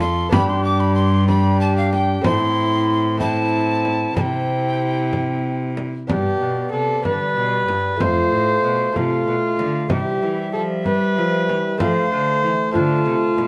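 In a straight 6/8 metre, this courtly, festive renaissance-style consort dance, cut from a longer piece, sets a hollow, chiffy soprano recorder melody over a nasal, gut-string viola second line, a clear trombone with light vibrato, a delicate fingerpicked lute in the background, a rich bowed cello bass and a small, bright frame drum struck with hard hands, together for the whole passage in a moderate stone-room reverb.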